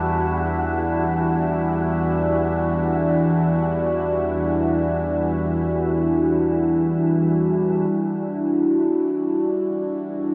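Dark ambient drone in free time and E minor, this desolate, cavernous excerpt from a longer piece sets a sweeping, resonant pad of detuned, wave-folded tones holding sustained chords up front with chorus, phaser and a filter swell over a calm, organ-like unison drone thickened by ensemble chorus, while an airy, breathy wind-like tuned noise texture lingers mellowly in the background until 7.9 s, the whole mix sunk in a huge reverb with an 8.7-second tail and a dark production.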